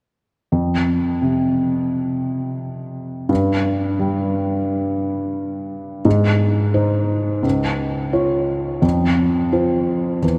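Classical and fragile with a tone of longing, this short piece cut from a longer work moves at a rubato 86 BPM in F minor, tuned to A4 = 438 Hz. A felt-muted upright piano plays soft, mellow accompaniment from 0.5 to 10.4 seconds, spanning Db2 to Db5 and moving from an open F5 through Ab and Db harmonies before returning to F5. The piano sits intimate and up front, with its action noise clearly audible, while a vast cathedral reverb with a 5.9-second decay fills the echoing space around it.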